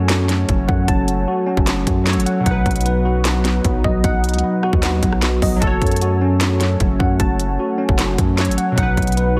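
Opening on a warbling, lo-fi tape-like pad holding sustained chords, glassy, detuned digital keys in the background, a clean tine electric piano spinning arpeggios through analog chorus and digital delay, and a deep, sine-toned 808-style bass, this brooding, menacing half-time trap cut from a longer hip hop piece brings in an up-front electronic drum kit at 0.1 s (hard-clipped kick, sharp snare, crisp hats, handclaps and rim clicks), the mix sealed in a dense, heavily limited modern master with light digital ambience.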